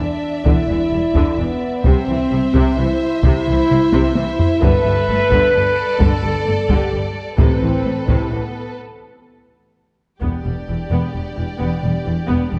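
A cinematic orchestral film-score excerpt in a heroic, dark 3/4 at 130 BPM opens with a lush, bowed violin section carrying the melody over a second, more distant violin line, rich violas, up-front French horns holding sustained chords, and cellos and double basses anchoring the bass, before close, dry, heavy-stick taiko drums enter at 0.5 seconds and play a fill around 3.9 seconds, and calf-headed timpani sound briefly from 7.4 seconds, all set in a moderate scoring-stage reverb with a dark, warm production.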